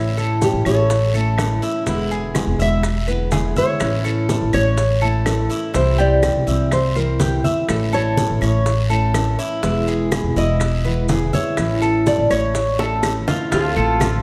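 A full-bodied, fingerpicked nylon-string guitar carries the melody in this danceable, sultry Cuban son and guajira excerpt, set at 124 BPM in a straight 4/4. Beneath it, a pizzicato upright bass sits up front with a woody tone, while a jumbo steel-string acoustic guitar with fresh strings picks out the accompaniment and a Cuban tres adds metallic, double-string arpeggios. From 0.2 s a percussion bed fills in with low-tuned congas with soft hands, tight high-tuned bongos and grainy compressed maracas, all kept low in the mix, joined by a raspy guiro at 0.4 s and woody background claves at 0.7 s. A drum fill at 12.8 s leads to a brief, punchy, bright trumpet line entering at 13.5 s as the harmony turns to Dm7 after moving through A, E7, C and E. A moderate large-studio reverb gives the ensemble an open, roomy feel.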